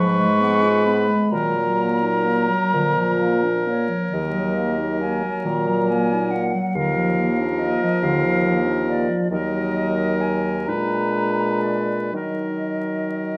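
In a slow, rubato 6/8 at 39-48 BPM, this solemn, melancholic romantic movement for wind quintet in Eb minor, tuned to A4 = 445 Hz, has all five instruments playing together throughout its 13.4 seconds. The close-miked concert flute carries the melody with an airy, hollow tone, crisp attack and vibrato, above a clear oboe second line, a dark, distant clarinet and a smooth-topped French horn in accompaniment, and a mellow bassoon on the bass. The harmony moves from Fdim/Ab through Bb and Bb7b9 back to Ebm, set in a recital hall reverb with a warm, shadowy production and vinyl crackle.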